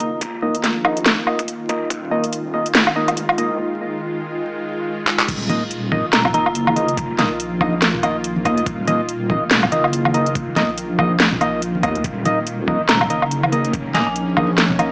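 Cavernous and dark, this deep dubstep piece, cut from a longer work, moves at 142 BPM in Eb minor with a half-time feel and a light swing on the sixteenths. A tense, nasal bowed-like drone holds sustained chords under a filter sweep through the build-up, while a hollow, wave-folded organ stab with chorus, phaser and dub echo punctuates the space above a deep, detuned wobble bass. The up-front garage drum kit carries a cracking snare, metallic hats, handclaps, woodblock and crash, joined by a muffled, overdriven electronic kick that drops out at 2 seconds and returns with the drop; a break follows from 3.6 seconds before a drum fill leads into the drop at 5.3 seconds. From there, low-tuned congas with thick skins sit in the background, and an eerie, inharmonic FM bell touches brief melodic phrases with chorus and dub echo. A moderate echo-chamber reverb surrounds a dry, gritty sound marked by vinyl crackle and a small-speaker character.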